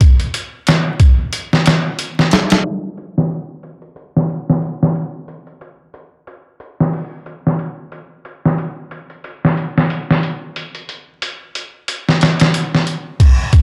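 A compressed, pitched-down sampler drum kit opens this hypnotic, brooding trip hop excerpt, sitting up front with a thumpy kick, a medium-tuned snare, hi-hat and crash cymbal played with a swung sixteenth-note feel in 4/4. The kit sounds re-recorded in a large room, and the dry, gritty hardware recording carries vinyl crackle, a low-pass filter and a light reverb. From 2.6 seconds a filter sweep colours the groove until 13.2 seconds, and the drums carry on to the cut at 13.6 seconds.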